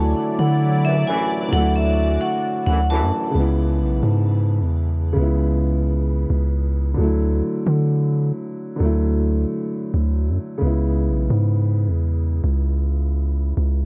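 A half-time 4/4 hip hop groove at 132 BPM in C# phrygian sets a menacing, melancholic mood, with a deep, mellow 808-style bass and a dark, boxy grand piano running through the whole excerpt, while a ringing, metallic vibraphone melody with digital delay, a detuned sawtooth pad with chorus and, from 0.8 s, distant brass stabs with vibrato and delay fill the opening until 3.3 s, leaving bass and piano to carry the Dadd9 and C#m7 changes in a small room coloured by worn, warbling cassette-tape pitch drift.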